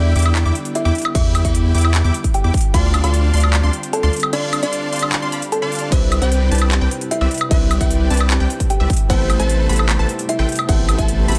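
This future bass passage rides a half-time feel at 151 BPM in 4/4, its euphoric, playful energy driven by a punchy, up-front electronic kick that hits from 1.1 to 2.8 seconds, drops out, and returns at 5.9 seconds, all set against a layered big-room kit of crisp hi-hats, handclaps, woodblock and crash cymbal. Beneath it, a thick, saturated sine sub bass sits prominently and pumps against the sidechain, while a huge, detuned supersaw riff adds a bright, compressed wall with a touch of vibrato. The C major melody comes from a woody, fingertip-plucked kalimba with a vintage, band-limited tone, its notes pumping and trailing into digital delay, shadowed in the background by lush, short-decaying unison pluck arpeggios that carry the same delay. A very quiet, breathy pad with chorus holds sustained chords through Em7, G7sus4/D, Cmaj7 and Am7, and from 5.9 seconds a felt-muted upright piano joins with soft, intimate accompaniment set far back in the mix. 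A light reverb surrounds the dense, heavily limited modern master, and the passage is cut from a longer piece.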